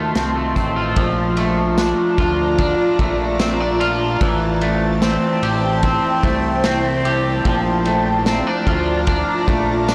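A blown-out, overdriven haze soaked in long shimmer reverb frames this haunting dream pop fragment, where an ethereal, airy pad with chorus and phaser holds sustained chords over F7, Bbmaj7 and Am7, a slightly broken-up, twangy electric guitar sits up front with arpeggios through lush chorus and tape echo, a fat, detuned analog bass adds saturated weight, and a vintage acoustic drum kit with a boomy kick, dark cymbals and tambourine enters at 0.2 seconds in a small, pumping room.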